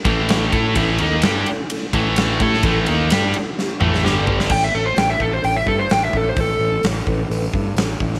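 A mellow, flute-like tonewheel organ with slow rotary speaker, chorus vibrato and key click holds sustained chords in the background while a growly fuzz bass plays beneath. A tight, bright, double-tracked distorted guitar riff and a huge, punchy arena drum kit join them in this raunchy, swaggering blues rock and southern rock fragment at 128 BPM in A mixolydian. After a drum fill, the riff guitar stops at 4.5 seconds and an overdriven slide guitar, played with fingerpicks and treated with tape echo, carries the melody up front until 6.8 seconds, all set in moderate spring reverb and small room ambience.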